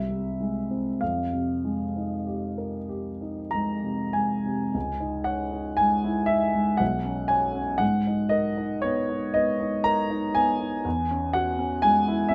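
Mysterious and nocturnal, this brief impressionist solo piano excerpt drifts in a slow, rubato triple metre, a grand piano alone carrying every note from its low bass up to its upper register. The instrument sits up front with a warm, present tone and long sustain, wrapped in light reverb. Shadowy harmonies open the passage before the music slides into a new tonal centre at 4.7 seconds, moving through colourful added-note and suspended chords to its close at 12.3 seconds.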